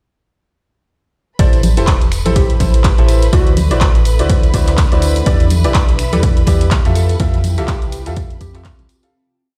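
Heard through a big sound system in a bare, stone-walled room, this bittersweet, soulful piano house piece in A minor drops in at 1.4 seconds at 124 BPM with a swung feel. An overdriven, punchy four-on-the-floor kick sits up front, joined by bright programmed hats, snaps and claps, hard-handed tambourine and congas, and a hollow, organ-like FM bass playing dotted rhythms under Am7, D9, Em7 and Fmaj9. A clear, woody upright piano riff pumps with a digital delay over veiled, muted strings, while a round, warbling vintage synth lead with chorus and a cloudy granular pad entering at 2.2 seconds stay in the background throughout, through to the fade-out that begins at 6.6 seconds.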